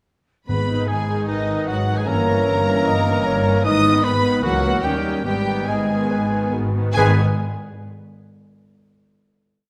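Classical and dramatic, this stormy, urgent romantic movement for symphony orchestra in G# minor drives ahead at 137-154 BPM before slowing from 2.9 s toward a final chord at 7.0 s, with a lush violin section carrying the smooth vibrato melody while a clear, distant second violin section and a punchy oboe double it at the octave, a pure, very quiet silver flute doubles it in unison and sixths, a clarinet adds a counter-melody and answers at phrase ends, mellow French horns also double the tune at the octave, rich violas play syncopated and sustained chords, cellos and woody double basses hold the bass on the beats, and soft-mallet timpani strike round single notes at 0.5 s and 7.0 s, all set in a wet scoring-stage reverb.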